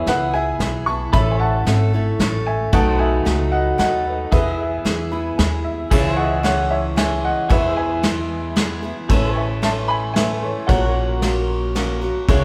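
A clear, woody upright piano carries the melody until 11.2 s in this sunny, easygoing honky-tonk and classic country waltz at 113 BPM in E major, backed by a detuned, jangly second upright piano that adds a fill from 4.8 to 5.9 s, a bright, boxy picked parlour acoustic guitar, a clean pedal steel guitar with volume swells holding sustained chords in the background, a thumpy pizzicato upright bass, and an up-front brush drum kit with a punchy kick and dark cymbals, all set in a moderate recital hall reverb.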